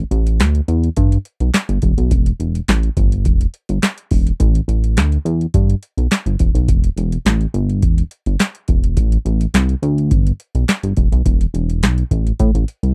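A dry, close recording with little reverb frames this short, late-night slice of early-eighties boogie funk in a straight 4/4 groove. A chorused synth bass sits up front from the start, its glossy pulse-wave and sawtooth tone shaped by pulse-width modulation and a quick filter pluck into a mellow, sustained line. Joining at 0.1 seconds, a booming analog drum machine pairs a deep kick and crisp snare with metallic hi-hats and handclaps, a short room on the snare, clap and hats and a tape-warm character.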